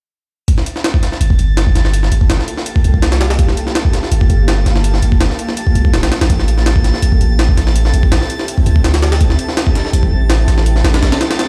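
A gritty, overdriven jungle sampler-style drum kit with a thumpy kick and high-tuned snare opens this dark, nostalgic drum and bass excerpt at 0.5 seconds, soon joined by a drifting glass-harmonics texture glinting in the background, a deep, mellow 808-style bass held up front, and a blurred, detuned granular cloud pad moving from Gm9 to Am7, all ringing out on a big sound system in a bare stone room.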